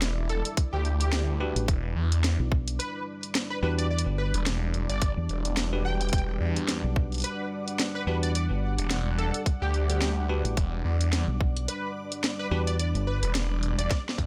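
Glitch hop at 108 BPM in E minor, funky and playful with a swung 16th feel, this short excerpt sits on an Em9 chord, with a swirling, phased detuned saw bass and a round, punchy fingered electric bass (entering at 1.6 s) up front beside a tight electronic kick and a drum kit with a cracking snare, hi-hat and rim click in a small room, closing with a drum fill at 13.9 s. A catchy plucky unison lead with ensemble chorus and digital delay carries the melody, while a bell-like tine electric piano adds delayed stabs. Underneath, a deep, moody analog pad with chorus and a blurred granular cloud pad in the background both pump against the sidechain, in an otherwise dry mix.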